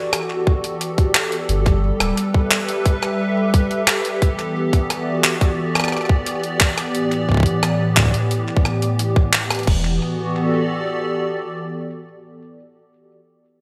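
A gritty, pitched-up jungle sampler-style drum kit of crash cymbal, handclaps, hi-hat and rim click, touched with gated reverb and delay, drives this intricate, eerie IDM excerpt in E minor at 88 BPM, joined at 0.5 seconds by an overdriven, tight electronic kick while a hollow, flute-like pad with ensemble chorus holds Em11, G6 and A7sus4 chords over brief touches of round sine sub bass, all bathed in a lush hall reverb and bright 1980s-style digital production.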